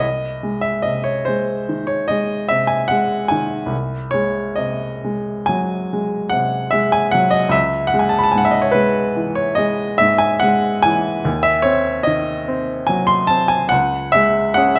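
Mournful and melancholic, this short cut from a longer romantic nocturne unfolds in a slow, rubato 9/8 at 48 BPM in dotted quarters, with a solo baby grand piano carrying everything from 0.0 to 14.8 seconds across a span from B#1 to B#5. The piano sounds clear, polished and up front, its short sustain framed by the moderate reverb of a recital hall. The harmony moves from G#/B# through C# minor at 7.5 seconds and a D# diminished seventh before settling on a bare C#5 fifth, all tuned slightly low to A4 = 439 Hz.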